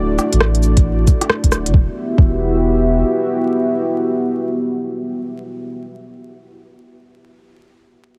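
A moody, detuned sawtooth pad with a slow attack and chorus opens this wistful, ghostly future garage excerpt in E minor at 135 BPM, pumping against a round sine sub bass from 0.0 seconds. Crisp hi-hat, cabasa and rim click from a small-room organic electronic kit soon join, and a soft, tape-warm kick sits up front from 0.8 seconds over a swung 4/4 groove. Heavily compressed radio-like ambience and vinyl crackle haze the sound as the harmony moves from Dadd9 to Emadd9 at 1.7 seconds.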